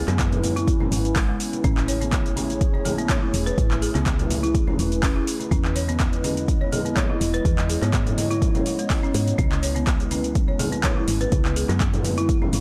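Warm and spiritual, this afro house excerpt moves at 124 BPM in C# minor with a light 16th-note swing, cycling through C#m7, Amaj7 and Emaj7 over about 12.6 seconds. A deep, layered electronic kick anchors the groove alongside an overdriven afro-pop kit of handclaps, metallic hi-hats and shaker, while ringing congas sit distant and soft in the background. A bright, rustic marimba played with hard mallets spins dry arpeggios through an analog delay, and a round, woody FM bass and a moody, detuned analog pad with chorus both pump against the kick, all set in a light digital ambience.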